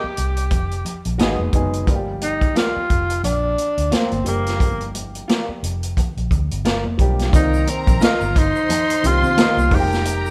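A breathy, whispered tenor saxophone carries the melody up front over a dark baby grand piano with audible action noise and a round, foam-muted fingered electric bass, opening this cinematic, silky slice of lush 1970s-style soul in C minor at 88 BPM with a gentle sixteenth-note swing. A punchy, rolled-off vintage drum kit and ringing, high-tuned congas join almost at once, and a slightly broken-up, lo-fi electric guitar riff sits in the background from 1.2 seconds as the chords move from Fm11 through Abm7 to Gm7. At 7.3 seconds, over Cm11, a rich, bowed violin section adds an expressive second line with vibrato and a very quiet, grainy tube shaker, all set together in a moderate stone room.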